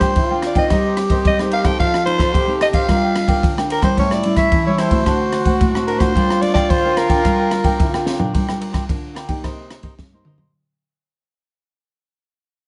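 A straight 4/4 samba-and-choro groove at 110 BPM drives this bittersweet, yearning fragment in G minor, cut from a longer piece. A compact cocktail drum kit sits up front with a punchy kick, high-tuned snare, rim clicks, toms and dark ride cymbal, while a fingerpicked nylon-string guitar adds a full-bodied classical foundation and a crisp, picked cavaquinho fills in higher up. Over them a growling soprano saxophone carries the jazz-style melody, raspy yet smooth on top with light vibrato, slapback echo and plate reverb, as a bright, forceful trombone with its own slapback echo shapes a distant second line beneath it. The harmony moves from Gm7 through F7, A7 and D7 before settling back on Gm7, and both horns drop away after about 8 seconds, when a drum fill marks a brief closing section. A fade-out runs from 8.3 to 10.5 seconds over a Cm7 chord and a final drum fill, all heard from further back in a moderately reverberant studio with a softened top end.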